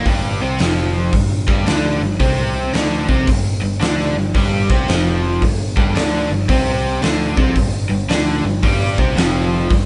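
The recording has the sound of a band playing live together in one large studio room, with a moderate reverb tail and a dark top end that stops around 10.6 kHz. This short cut from a longer piece is smoky, heavy blues rock with a southern rock flavor, moving at 112 BPM in 4/4 with a swung eighth-note feel. An overdriven, double-tracked electric guitar sits up front with a warm, picked tone, driving a riff built on a G5 power chord. Beneath it, a growling picked electric bass adds a bright, overdriven bite, blending direct and amped sound. A big acoustic rock kit enters at 0.1 seconds and is also up front, with a punchy kick, a fat snare and hi-hat ringing in a bright stone room.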